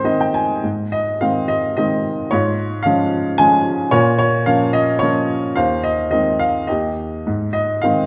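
A short upright piano fill opens this brief, eight-second passage of lyrical classical solo piano, lifted from a longer piece. The mood is relaxed and sunny, in a lilting triple metre with uneven, rubato beats that let the phrasing breathe. The upright piano sits up front with a woody tone and short sustain, ranging from Eb2 up to Ab5. From 0.6 seconds the main section unfolds over a gentle progression that moves from the home chord through Db/Ab and Bbm, then to Ab/Eb and Eb before settling back home at 7.3 seconds. A moderate reverb gives the sound the open air of a church or concert hall.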